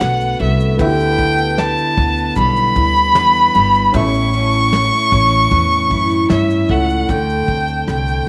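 A bowed violin carries the melody from the start, its smooth, even tone with vibrato sitting up front yet sounding distant, touched by a slapback echo. This is carefree, sunny acoustic pop in D major at 76 BPM in a straight 4/4, cut from a longer piece. A full-bodied picked jumbo steel-string guitar and a worn, slightly detuned upright piano supply the accompaniment, with the piano staying in the background and dropping out at 7.1 seconds. Underneath, a woody pizzicato upright bass and a soft, dark brush kit with a tight kick, medium-tuned snare, rim click and shaker hold the groove, the drums having a rolled-off top. The harmony moves from Bm7 to Em/D and then A before shifting to D7sus4 at 7.1 seconds as a new section begins. Light reverb and a small room ambience surround the whole.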